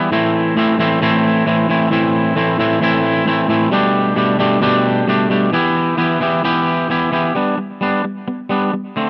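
This rough home demo has a light touch of reverb around a single twangy electric guitar, heard up front and clean, fingered with a warm, twangy edge. It's a rock excerpt at 132 BPM in a straight 4/4, cut from a longer piece and tuned slightly sharp to A4 = 443 Hz. The guitar plays alone from start to finish, ranging from A2 up to G4 over a bittersweet, cool mood. The harmony moves from Am through Gadd9/B and Em before a brief closing section arrives at 7.4 seconds on a G chord. The whole fragment lasts just over nine seconds, leaving the phrase hanging as if mid-thought.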